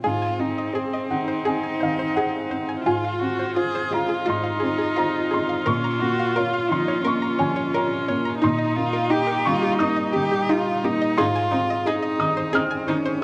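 A felt-muted upright piano sits up front in this fragile, longing neoclassical piece for piano and strings, its mellow, short-sustained tone carrying the accompaniment across a range from Ab2 to F6. The pulse is 87 BPM in 4/4 but played with a rubato feel, tuned to A4 = 444 Hz, and the harmony moves from Ab through Fm/Ab, Bbm and Eb/Bb before settling back on Ab at 11.2 seconds. A single intimate cello, heard close and also up front, sings a dark second line bowed sul tasto with vibrato and a smooth top, while one viola adds a rich, softly attacked accompaniment with light vibrato and an airy bow until 13.0 seconds. Tucked in the background, a bright, twangy resonator pluck with a sawtooth core, a noise layer and a filter sweep spins arpeggios through chorus and slapback echo. A moderate plate reverb with a 2.8-second decay surrounds the ensemble in this 13.2-second fragment cut from a longer work.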